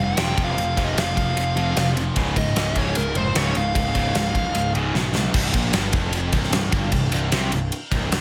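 Aggressive and heavy, this short hard rock cut from a longer piece drives along at 151 BPM in a straight 4/4. A dark, smooth lead guitar with overdrive carries the melody, spanning Bb4 to G5, until 4.7 seconds. It is set over a very quiet crunchy overdriven guitar riff and a pair of tight distorted rhythm guitars, one of them double-tracked, sitting bright in the background. Up front, a fuzzed, punchy electric bass with overdrive anchors the low end, while a gated 80s drum kit enters at 0.2 seconds with a fat snare, tight kick and bright crash and ride cymbals ringing in an airy stone room. A drum fill at 4.9 seconds leads into a new section at 5.3 seconds, where the crunchy guitar stops and the remaining guitars, bass and drums push on together. The harmony moves through F5, Db and C5, and a light reverb gives the polished mix a touch of space.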